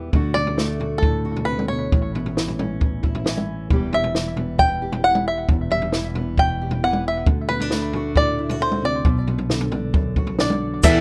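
A twangy bluegrass banjo, played with fingerpicks and set up front with an analog delay, carries the melody through this short indie folk excerpt, its percussive tone giving the music a bittersweet, stirring quality. Beneath it, a dark fingerpicked steel-string acoustic guitar and a direct fingered electric bass hold down the accompaniment over chords moving from D and Aadd9 to E minor, then back to D and on to B minor. A compact cocktail drum kit sits forward in the mix, where a tight kick, a high-tuned snare, toms and dark crash cymbals give the straight 4/4 feel a natural sound from a tight booth. At 10.8 seconds the fingerpicked guitar stops and the arrangement starts to build: a bright, boxy picked parlour guitar leaps to the front, a round, double-strung mandolin adds arpeggios, and a grainy tube shaker sits in the background. Light reverb and a rough home-demo mix give the piece an intimate, unpolished character.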